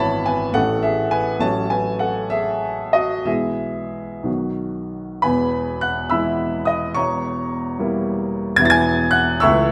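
A baby grand piano sits up front in a moderate recital hall reverb, its warm, open tone carried by long sustain. This short passage, cut from a longer romantic character piece for solo piano, feels hopeful and passionate, moving in 6/8 with free, expressive rubato. The single piano covers a broad span from E1 up to A6, filling out both the deep bass and the bright upper register. The opening phrase leans from E/G# through A and F#m/A before settling onto E/B and B. At 5.2 seconds a new section begins on E, passes through a darker Edim7 chord at 7.0 seconds, and returns home to E at 8.6 seconds.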